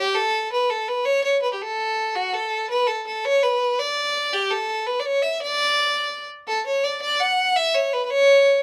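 A single bowed fiddle plays alone in this lively, bright Celtic folk fragment, its rich, focused tone carrying light vibrato and a smooth top as it sits up front in a small, wet room. The tune moves in a straight 6/8 at 111 beats per minute in D major, staying between F#4 and F#5. It opens with one section and shifts into a new one at 6.5 seconds before the cut at 8.6 seconds.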